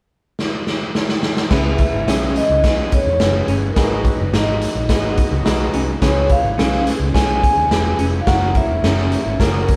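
This passionate, urgent slice of uptempo 1960s-style soul opens with a drum fill at 0.4 s on a raw garage kit, up front with a punchy kick, a medium-tuned snare and dark cymbals in a bright stone room. At 1.5 s the full band comes in, moving through C#m7, G#m7, C#7 and F#7. A vibraphone played with soft mallets carries the melody, mellow and ringing with a slow motor vibrato, sitting mid-forward in the mix. Underneath, a vintage foam-muted electric bass gives a round, dark low end. In the background, an overdriven tine electric piano adds barky, gritty accompaniment through a combo amp, while a clean, hollow-bodied semi-hollow guitar picks a riff with tremolo. A very quiet overdriven tonewheel organ holds thick sustained chords through a slow rotary speaker, and the band sounds as if it is playing live in one large studio room with moderate reverb.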